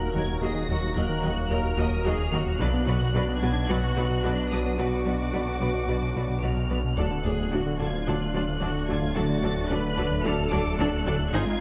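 A smooth, nasal synth bass riff drives this vast, futuristic excerpt of hybrid orchestral and electronic film score at 110 BPM in 4/4, underpinned by a thick, detuned saw bass with chorus and a distant bowed double bass section. A clear studio violin section carries the high, vibrato-rich melody while background symphonic violins add a second line, lush violas and cellos fill the accompaniment and bass, and a mellow French horn section and a deep, moody ambient pad hold sustained chords. The harmony moves from Ebm to Bm at 2.6 seconds and on to D at 7.0 seconds, all set in a dark production with a moderate scoring stage reverb.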